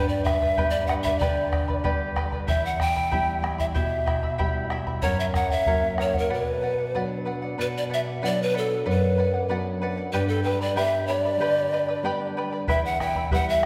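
Andean folk in B minor at 94 BPM and a straight 2/4, this festive, earthy excerpt sets a breathy, mellow bamboo pan flute up front on the melody with vibrato and tongued chiff, over a shimmering, bright fingerpicked charango with double strings and a deep, fingerpicked nylon-string guitar also up front, while a round bombo plays until 6.3 seconds, drops out for a break, and returns at 12.7 seconds, all in a church or concert hall with wet reverb.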